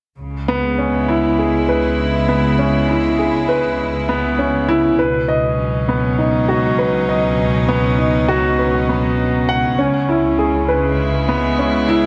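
Electronica at 100 BPM in C# minor, cinematic and intimate, cut from a longer piece. A rich, earthy chamber string section holds bowed chords with light vibrato from 0.2 s over a dark double bass section bowed sul tasto on a low C#, while from 0.5 s a clear, woody upright piano sits up front playing a riff through digital delay. The harmony moves from C#m7 to B/C# at 5.0 s and back at 9.8 s, all within a moderate scoring stage reverb.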